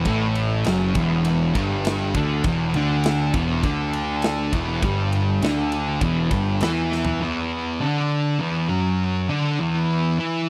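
A dry, close recording with a 1970s studio character frames this hypnotic, sludgy stoner and doom metal excerpt in E minor, moving at 101 BPM in a straight 4/4. Two thick fuzz guitars, one dark and one warm, sit up front with their distorted riff while a round, overdriven picked bass and a big acoustic drum kit, with tight kick, medium-tuned snare, ride and toms in a bright stone room, drive the opening Em section until a drum fill at 6.9 seconds. At 7.2 seconds the bass and drums stop, leaving the two guitars alone on an unaccompanied riff until the cut at 10.5 seconds.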